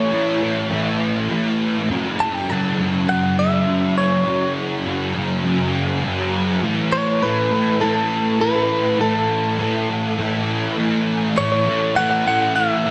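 Rock in a dreamy, hazy mood, this short passage cut from a longer piece moves in a straight four-four feel. A thick fuzz guitar carries the low riff throughout, double-tracked and up front, its distorted, picked tone given extra body by an ensemble chorus. Above it, a direct-recorded clean electric guitar plays the melody in a higher register, bright and twangy, compressed and picked with a slapback echo trailing each note. The harmony moves from A5 to F#m at 1.9 seconds and back to A5 at 6.6 seconds, and a new section arrives at 11.4 seconds. A lush hall reverb surrounds the pair, softening the edges into a gauzy haze.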